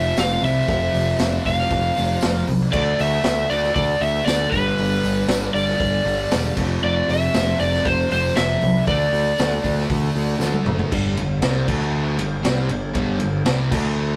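Garage rock with a rowdy, swaggering attitude, cut from a longer piece and set at 117 BPM in a straight 4/4, moving through F5, D5 and G chords. An overdriven slide guitar, played with fingerpicks and sitting up front, carries the melody from the start until 10.4 seconds, while a thick, double-tracked fuzz guitar grinds out a bright, distorted riff beneath it. A growling picked electric bass, direct and amped with overdrive, sits prominently in the low end, and a raw acoustic drum kit with a punchy kick, medium-tuned snare and gritty, rolled-off top pumps in a small room. A jingly vintage tambourine rattles in the background, and after a drum fill at 10.4 seconds the piece shifts into a new section built on G5 and D5 from 10.9 seconds. The whole take has the rough feel of a rehearsal-room recording, with a moderate stone-room reverb around it.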